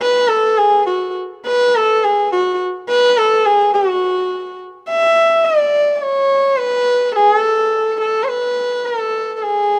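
A lone sarangi carries this short fragment of Indian classical music, its rich, bowed tone sitting close and up front with an intimate, devotional feel. The single player shapes each note with a soft attack and light vibrato, using portamento so the line glides between pitches in a meditative way. An airy quality in the bow and the shimmer of sympathetic strings surround the melody, which moves within a range from F#4 to E5. The passage falls into two parts, with a change arriving at 3.8 seconds and the playing continuing to 9.8 seconds. Light reverb and a small-room ambience frame the sound, and the rough home-demo mix keeps the performance feeling personal and unpolished.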